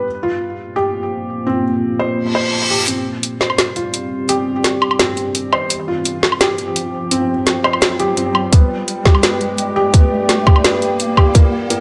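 A moderate echo-chamber reverb gives this tense, cinematic half-time drum and bass excerpt at 170 BPM a roomy, shadowy sound. A deep, dark ambient pad with chorus, sidechain pumping and a filter sweep holds sustained chords under a soft, felt-muted upright piano playing intimate delayed arpeggios, complete with audible action noise, over a Bb5, C5, F5 and G progression. At 2.3 seconds a reverse cymbal sweeps in, and at 2.9 seconds a riser begins the build-up as an up-front electronic kit of woody snare, metallic hi-hats and woodblock enters. At 8.5 seconds a tight, layered electronic kick drum joins.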